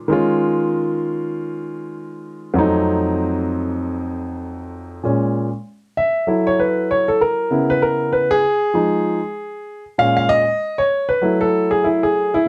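Nocturnal and mellow, this short hip hop excerpt features a solo grand piano with a warm, up-front tone, moving at 97 BPM in 4/4 with a swung sixteenth-note feel. The piano opens on extended chords like Eb9sus4 and F7b9, then from 5.0 seconds takes a solo passage over a cycle of minor sevenths starting on Bbm7. A small room's moderate reverb and a dark production give the sound a late-night intimacy.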